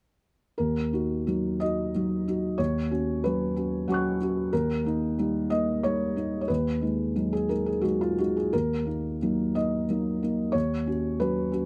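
A felt-muted upright piano plays alone from 0.6 to 11.7 seconds, its thick felt giving a soft, mellow tone that sits up front and close in this intimate, wistful piece of neoclassical minimalist piano, cut from a longer work. In a rubato three-four feel, it moves through Ebm, Bsus2/Eb, Eb and Abm7/Eb before circling back to Ebm and Bsus2/Eb, spanning Eb2 to F#6. The sound is detailed and dry, with little reverb around the instrument.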